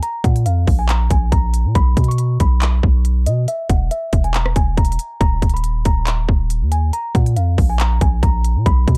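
Dry, dark production frames this hard-hitting trap cut from a longer piece, moving at 139 BPM in 4/4 with a half-time feel. An overdriven electronic kit sits up front with a hard-clipped kick, crisp hi-hats, handclaps and rim clicks, while a deep, sine-toned 808 bass enters at 0.2 seconds with a fast attack and long, mellow decay. Above them, a small celesta plays a soft, sweet, bell-like melody from felt hammers, its delicate notes trailed by digital delay.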